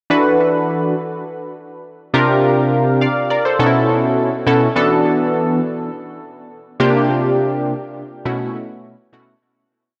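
A punchy, warbling vintage sawtooth polysynth plays alone up front in this smooth, danceable funk piece at 103 BPM in 4/4, comping pushed rootless sus chords from E9sus4 through C9sus4 to B9sus4 with filter sweeps, grace notes and short fills, its chorus and analog delay bathed in a long plate reverb for a dreamy mix that fades out from 7.1 seconds.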